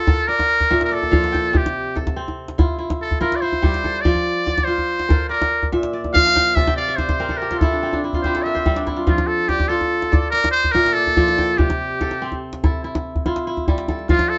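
Set in a straight 12/8 at 96 BPM in dotted quarters, this short cut from a longer piece of West African string and xylophone music moves with a joyful, hypnotic pulse. A close, dry djembe struck with hard hands keeps the beat from start to finish, its medium tuning sitting up front beside the other parts. The kora spins bright, ringing arpeggios from Bb2 up to A5, fingerpicked and crisp, cycling through Bb, C and F, and it adds a fill between 6.6 and 9.1 seconds. Over it, a trumpet with a metal mute plays a jazz-style solo in the opening 9.1 seconds, its buzzy, thin tone carrying vibrato and a smooth top between F4 and F5. The trio sounds like a band playing live in one room, dressed in light reverb with a soft, rolled-off high end.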